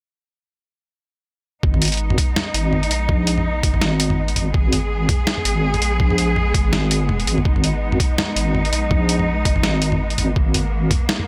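A half-time drum and bass groove with a light swing sets the pulse of this short, spacious, cinematic excerpt, which begins at 1.6 s. A compressed, pitched-down electronic kick with a gritty, thumpy, tape-warm character sits beneath a sampler-style boom bap kit of hi-hat, medium-tuned snare and toms that sits up front. A deep, dark wobble bass, built from detuned square and sine tones with a fast attack and chorus, holds long low notes until it stops at 10.9 s. Above it, a lush, bowed symphonic cello section sustains chords with rich vibrato and a smooth, focused top, pumping against a sidechain. The whole passage rests on one minor chord, wrapped in light reverb and digital ambience.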